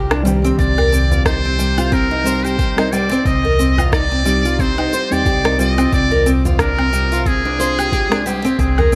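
A buzzy muted trumpet with vibrato carries a distant, jazz-style solo melody from 0.6 s in this meditative, earthy organic downtempo excerpt in C minor at 90 BPM with swung 16ths, moving from Cm to Bb7/C at 5.9 s over bright fingerpicked nylon-string guitar arpeggios steeped in delay and shimmer reverb, woody pizzicato upright bass with sidechain pumping, dark chorused felt-like synth keys, a deep tape-toned electronic kick, electronic rim click with woodblock and cabasa, and a very quiet, close, low-tuned tabla.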